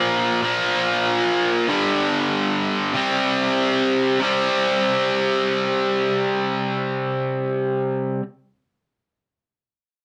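A bright, double-tracked overdriven electric guitar plays alone and up front in this rowdy, upbeat punk fragment in free time, tuned to A4 = 443 Hz, picking a Bb5 chord that moves to G5 at 1.7 seconds and C5 at 2.9 seconds within a range of G2 to C4, heard in a moderate small-room reverb and cut from a longer piece.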